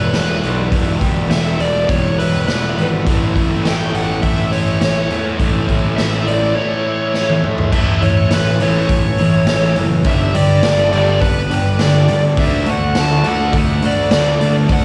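A dark, distorted, bluesy lead guitar carries the melody through slapback echo and analog delay in this brooding, cathartic quiet-loud alternative rock excerpt, set over a bright, double-tracked fuzz guitar riff, a slightly broken-up, lo-fi arpeggiated guitar bathed in lush chorus, a growly fuzz-picked bass, and a raw, saturated garage drum kit with a punchy kick and dark cymbals whose fill at 7.2 seconds leads into the second section, all moving through Em, A, G and D inside a lush hall reverb that gives a big arena sound.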